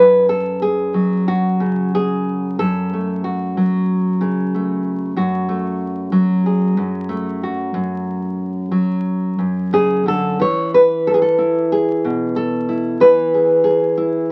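Gentle and warm, this short folk fragment features a lone nylon-string guitar, fingerpicked in a classical manner and sitting up front. The tempo is 92 BPM in 4/4, but the rubato feel lets the time breathe freely. The harmony moves from F#m to a rootless D/F# at 5.2 seconds, then settles on E at 10.4 seconds, with the guitar ranging from F#2 up to C#5. The instrument is tuned slightly high, to A4 = 442 Hz. A moderate studio ambience surrounds it, while the sound of a very old 78 rpm record adds a layer of vinyl crackle.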